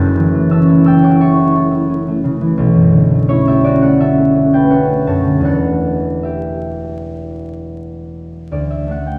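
Classical solo concert harp, serene and graceful in a rubato 4/4 around 77-88 BPM, sits up front with a ringing, thumb-plucked tone spanning E1 to F#6 over F#m7, Bm11, Em11 and a closing D at 8.5 seconds, set in a recital hall's wet reverb with vinyl crackle in this short cut from a longer piece.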